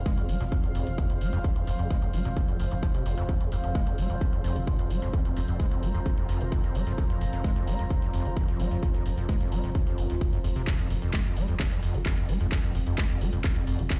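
A squelchy, gritty acid bass riff opens this hypnotic 130 BPM techno excerpt in F minor, over a round sine sub bass, a swarming, detuned drone in the background and a moody, wave-folded ambient pad, each pumping against the sidechain while the acid line carries chorus, 12-bit sampler grit and tape echo. From 0.1 seconds a heavy, layered kick sits up front alongside a tape-warm analog drum machine playing handclaps and hi-hat. The driving, peak-time mix sounds as if played on a big system in a bare room, with a large studio reverb.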